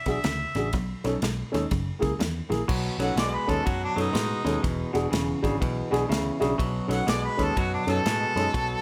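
Rollicking yet laid-back, this electric blues shuffle excerpt sets a twangy, clean electric guitar riff with spring reverb over a round, foam-muted electric bass and an airy, polished country drum kit with punchy kick, ride and crash, while a mellow, boxy grand piano adds a fill at 5.6 seconds and an overdriven harmonica with plate reverb, light vibrato and scooped notes sings up front, taking a jazzy solo from 2.7 seconds.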